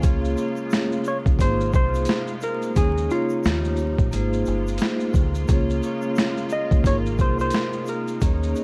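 Dry and dusted with vinyl crackle, this dreamy, mellow lo-fi hip hop excerpt at 88 BPM in Ab major sets a gritty, overdriven boom bap sampler kit up front beside a round, punchy dub bass, a ringing vibraphone with slow motor vibrato, filtered symphonic strings holding bowed chords, a faint bright egg shaker in the background, and a dark, clean hollow-body jazz guitar that carries the melody from 1.1 s.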